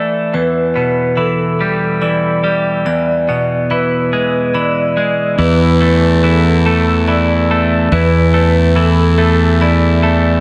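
A fuzz-soaked, overdriven electric bass enters at 5.4 seconds with a dark, round low E beneath a bright, twangy twelve-string electric guitar and a metallic, ringing vibraphone with fast motor vibrato, both spinning delayed arpeggios from the start through Em7, E7 and A5/E in this brooding, cinematic post-rock excerpt, set at a slow 48 BPM in 6/8 within a lush hall reverb that gives it a big arena sound.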